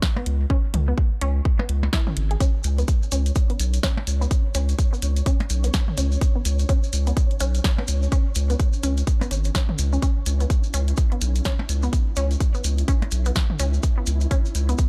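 A punchy, up-front electronic kick and a deep, saturated sub bass moving between G#1 and C#2 drive this quirky, cool minimal techno cut in C# minor at 126 BPM, with a 59% swing on the 16ths and a house kit adding hi-hat and snare. A squelchy, resonant blip pluck riff runs from B3 to G#4 through phaser, delay and sidechain pumping, alongside overdriven electronic percussion blips and toms treated with tape echo. Maracas join at 2.4 seconds, and a flickering, granular background texture with its own reverb enters at 3.1 seconds in a dry, close mix taken from a longer piece.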